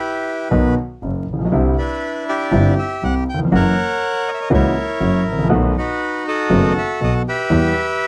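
A reedy, close-miked bandoneon opens this passionate, sultry tango fragment, carrying the melody in a full, up-front voice over a rubato feel. From 0.5 s, a concert grand piano with deep, vintage warmth supplies the accompaniment, while a single bowed double bass adds a boxy, even bass line with vibrato; both stop at 7.7 s. The sound is dry and close, like a 1970s studio recording with vinyl crackle beneath, and the passage is cut from a longer piece.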